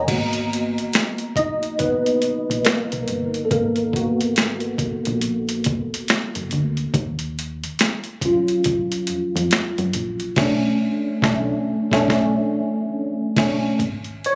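A slow 4/4 groove at 70 BPM sways with a 62% swing on the sixteenths, laid down by a sampler-style boom bap kit that sounds gritty and pitched down, with a thumpy kick, a high-tuned snare, hi-hat, finger snaps and a crash sitting up front. This cut from a longer neo-soul and R&B piece carries a soulful, late-night mood, moving from G#m9 to D#m9 and then Bm9 before landing on G#sus4 at 13.8 seconds. A worn, slightly out-of-tune tine electric piano takes the lead with a solo from 0.1 seconds, its clean, direct tone carrying an ensemble chorus. Beneath it, a solid FM bass gives punchy, round, dark notes with a fast attack that then decays. The band hits an accent from 10.4 to 13.8 seconds. Captured on a phone in the room, the sound has a light club reverb and compression, tuned to A4 = 439 Hz.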